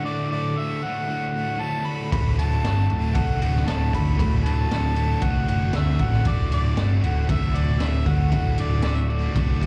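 Rowdy and swaggering, this garage rock excerpt rides a straight 4/4 at 116 BPM in D major, sitting on a D chord throughout. A crunchy, double-tracked overdriven guitar picks out the riff from the first moment. Above it, a close-miked harmonica carries the melody in a bright pop style with light vibrato and scooped notes, its tone pushed through overdrive, slapback echo and tape echo. At 2.1 seconds a dark, round picked electric bass arrives up front, alongside a raw acoustic drum kit of kick, snare and ride that sounds gritty and saturated in a small room, with a punchy kick, a high-tuned snare and a rolled-off top. The sound suggests a live gig heard through the venue's PA and captured on cassette tape, with only a touch of club reverb.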